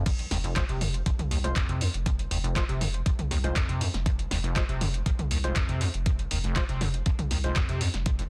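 Squelchy, resonant acid bass and a deep, thick sine sub open this trippy, hypnotic acid house excerpt in F minor at 120 BPM, both pumping against a thumpy, tape-toned kick and an analog drum machine with punchy snare, handclaps, toms, crash and metallic hats, while a hollow, organ-like stab with chorus and delay sits in the background from 0.6 to 7.6 seconds over a dry, dense, heavily limited mix.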